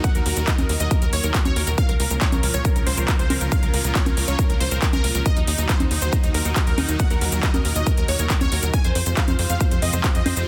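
Uplifting trance with a driving, bittersweet mood, where a punchy, up-front electronic kick and a pumping big-room kit of congas, handclaps, shaker and metallic hats sit alongside a tight sawtooth sequencer bass with tube saturation, a detuned, bright unison pluck melody coloured by phaser, cassette tape and dub echo, and a lush supersaw pad holding sustained chords in the background, all pressed into a dense, heavily limited modern master.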